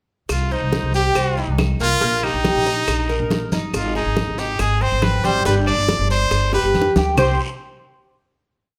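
A straight 4/4 pulse at 140 BPM drives this short, sultry Cuban son and guajira piece in C minor. Claves tap a woody, vintage-toned two-bar time line, bongos keep steady eighths with a hand bell, low-tuned congas add damped slaps and open strokes, and a grainy, distant maracas shaker in the background and a very quiet, raspy guiro fill out the percussion. Up front, a dark pizzicato upright bass plays a syncopated figure. From 0.5 s, a picked Cuban tres with double, partly octave-doubled strings spins a metallic arpeggiated guajeo over the Cm, Eb/Bb, Ab and G progression. A brilliant, punchy trumpet leads with forceful, pop-style hook phrases and vibrato, and after a drum fill at 6.5 s the piece settles on a final C5 chord at 7.2 s, all set in a moderate large-studio reverb.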